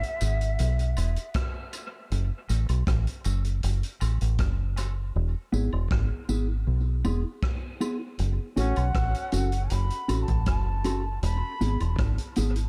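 Dub reggae at 79 BPM in F# minor, hypnotic and heavy, with a dark, warm small-room sound, built on a deep, round fingered electric bass sitting up front, a vintage drum kit with a punchy kick, hi-hat and rim click, and a clean, compressed electric guitar dripping with dub echo. A mellow, airy jazz flute with vibrato sounds distantly at the start, then returns at 8.6 seconds, where a breathy, whispered trombone touches a single note beneath it. Faint tambourine and woodblock percussion echo in the background, and the hi-hats are muted between 5.1 and 8.2 seconds of this cut from a longer piece.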